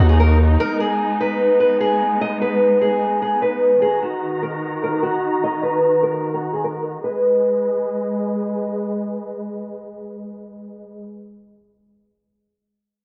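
A half-time trap groove at 149 BPM in 4/4 sets a dark, hard-hitting hip hop mood in G# minor, opening with a brief blast of distorted, saturated 808-style bass on D#2 that hits up front and is gone by 0.6 s. A picked, boxy old ladder-braced acoustic guitar carries the melody with delay until 8.2 s, while a muted symphonic string section sustains veiled, distant chords with vibrato through 11.0 s. The mix sits in a small room with light reverb and a low-pass filter, with a filter sweep running over the first 7.0 seconds as the chords move between D#m and G#m in this cut from a longer piece.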